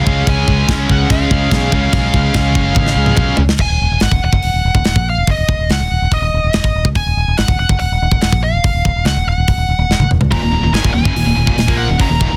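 A dark, high-gain lead guitar carries the melody throughout this heavy, brooding metal excerpt, riding the upper register at 143 BPM in 4/4 and Eb minor. Up front, a growly, foam-muted fingered electric bass and a tight acoustic drum kit anchor the groove, with bright cymbals, a medium-tuned snare, kick, hi-hat, crash and toms, and the drums add short fills at 2.8 and 9.9 seconds. Beneath the lead, three picked, distorted rhythm guitars stack the riff: a scooped heavy guitar and a double-tracked fuzz guitar sit in the background beside a tight distorted one. The riff guitars drop out at 3.4 seconds, just before the harmony shifts from Db to Ebm at 3.6 seconds, and return at 10.3 seconds. The sound is dry and close, finished with a dense, heavily limited modern master.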